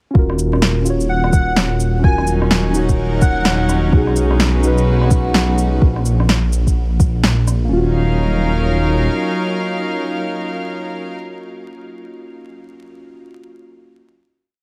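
Vinyl crackle hangs over this rainy, wistful future garage piece in Eb minor at 127 BPM, where a soft, muffled two-step kick and a skittering, shuffled beat of woody snare, rim click and shaker sit up front with a dark, rumbling detuned saw bass and muted, felt-like synth keys pumping with sidechain and dub echo; an airy, dreamy lead with vibrato and portamento drifts through short phrases from 1.1 s, and a rich, earthy chamber string section sustains slowly shifting chords until the groove gives way at 7.7 s to a final Ebm9 chord held by strings and keys.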